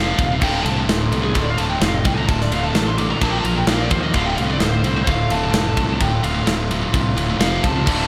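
Relentless and epic, this heavy metal passage in D minor drives at 129 BPM in a straight 4/4, where a dark, distorted lead guitar solo with slapback and tape echo soars over a bright, scooped high-gain riff guitar, a growly, punchy fuzz bass, a gritty, up-front drum kit of tight kick, medium-tuned snare, crash and ride, and a double-tracked, biting overdriven guitar entering at 0.4 s, with a heavy high-gain guitar joining at 7.9 s, all set in a lush hall reverb that gives a big arena sound as the chords move from Dm through Bb5 to F5.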